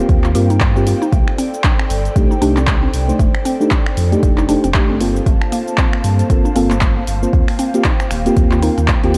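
Moody and smooth, this short deep house fragment, cut from a longer piece, moves at 116 BPM in 4/4 with a swung sixteenth feel in C dorian. A deep, overdriven electronic kick sits up front, joined by a dry, punchy analog drum machine supplying finger snaps, handclaps, hi-hat and shaker, both touched by a small room ambience. Beneath them a full sine sub bass with an added octave holds long notes, pumping against the kick, while a mellow FM electric piano, round and full-bodied with a dark, chorused tone, plays stabs that trail off into tape echo. An airy, breathy pad of detuned sawtooth and triangle layers with a moving notch sustains chords through the background, and a woody, mallet-like synth pluck traces arpeggios behind it, also chorused and echoed. The harmony drifts from Eb69 through Cm69, F13 and Gm11 before returning to Eb69 at 7.3 seconds, all framed by light reverb and a cassette-tape character.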